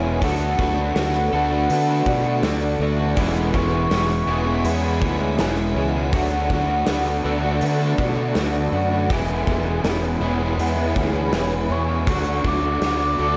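A hazy, dreamy shoegaze and dream pop rock excerpt at 81 BPM in 4/4, where a distant, airy concert flute with vibrato carries the melody through analog delay over a morphing, detuned wavetable pad treated with phaser and its own reverb. Three guitars sit in the background: a clean electric with reverse reverb, a bright, double-tracked crunchy overdriven guitar, and a dark semi-hollow guitar drenched in lush chorus, while a very quiet, boxy twelve-string acoustic shimmers with picked arpeggios. Up front, a fuzzed, overdriven fingered bass drives things throughout, joined by a gated 80s drum kit in a bright stone room with punchy kick that plays from 0.2 to 13.0 seconds, all in light, small-room ambience.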